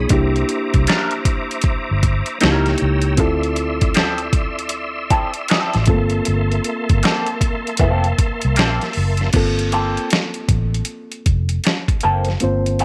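A swung sixteenth-note groove in 4/4 anchors this soulful, introspective neo-soul R&B excerpt, led by an up-front, gritty, pitched-down boom bap sampler-style kit with a thumpy kick, medium-tuned snare, hi-hat and crash, over a dark, round, foam-muted electric bass. A reedy, worn, slightly out-of-tune electric piano with light overdrive carries the chords from C9 through C#dim7 and Dm9 to Gm11, while a clean tonewheel organ with key click, chorus vibrato and fast rotary speaker sustains beneath it until 9.3 s. From 0.9 s a slightly broken-up, lo-fi electric guitar through a small old amp adds a picked, wah-colored second line, all in a dry room.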